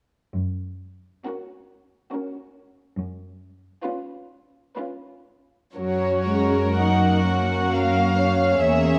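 Serene and warm, this excerpt from a slow romantic movement for string orchestra moves in three with a flexible, rubato feel. A dark, intimate cello section holds the bass from 0.4 seconds. At 1.3 seconds the violins enter: one section carries a pure, floating melody up front and another plays a second line beneath it, both bowed sul tasto with a soft attack, while a woody, lush viola section adds accompaniment with vibrato. The ensemble sits in a moderate recital hall reverb and comes through worn cassette tape with a warbling pitch drift.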